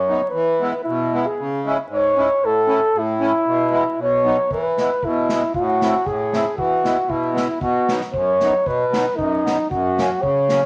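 A mellow flugelhorn carries the melody up front with vibrato and a classical poise, set against a sweet, reedy accordion accompaniment with light tremolo tuning, in this festive, bouncy alpine folk dance-band fragment in 2/4. At 4.5 s an acoustic drum kit joins with a punchy kick and a medium-tuned snare played with bundle sticks, sounding airy and polished in a small room. A wet studio reverb and a layer of vinyl crackle give the recording a vintage sheen.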